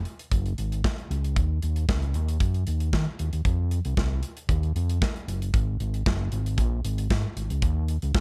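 An overdriven fingered electric bass, dark and round and placed up front, drives this danceable disco excerpt at 115 BPM in Eb dorian, entering at 0.3 s and ranging from Gb1 to Eb3. A modern studio drum kit starts at 0.1 s with hi-hat, a tight kick and a medium-tuned snare, its small-room sound dressed in gated reverb. The mix is dry overall, with a faint mains hum beneath the two parts.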